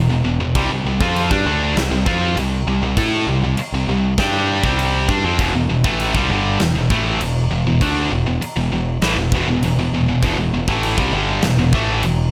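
Heavy metal at 99 BPM in E phrygian, this epic, heavy excerpt is led by an up-front, double-tracked high-gain guitar riff ranging from E2 to A4 over a bright, direct picked electric bass, while a big acoustic rock kit with a punchy kick, medium-tuned snare and crash cymbal in a stone-room sound enters at 0.6 seconds, the dry mix moving from E5 to C5 before settling on Em at 5.4 seconds.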